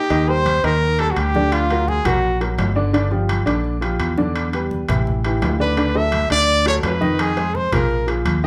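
Afro-Cuban jazz at a lively, danceable 169 BPM in straight 4/4, cut from a longer piece and played live by a band in one room with moderate large-studio reverb. A clear, punchy trumpet leads up front with forceful, scooped notes and light vibrato, sounding from the start, dropping out at 2.4 seconds and returning at 5.6 seconds, over an intimate baby grand piano whose short sustain and audible action noise sit beneath it. A direct, up-front fingered electric bass anchors the low end while thick-skinned congas, close and dry in the background, play alongside ringing, vintage metal-shell timbales through chords such as Gm7, D69 and Fm7.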